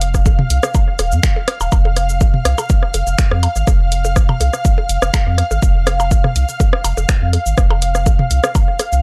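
A steady 4/4 pulse at 123 BPM drives this short cut from a longer minimal techno track, with a light 53% swing on the 16ths that keeps the groove loose and hypnotic. A punchy, up-front electronic kick anchors it from 0.1 s. Around it sit a layered house kit of finger snaps, hi-hat and shaker and a minimal click kit of percussion blips, rim clicks and toms, whose tape-warm hits trail through an analog delay. Underneath, a round, deep analog bass with a fast attack and sustained, dark tone moves between Eb1 and F2, pumping through sidechain compression. An ethereal, airy pad of detuned unison saw and triangle voices holds F5 with a slow attack and long release, shimmering through ensemble chorus and its own reverb while it too pumps through the sidechain. The mood stays cool and the mix is dry and gritty, with light reverb and the kick and house kit carrying the ambience of a large room, tuned slightly high at A4 = 441 Hz.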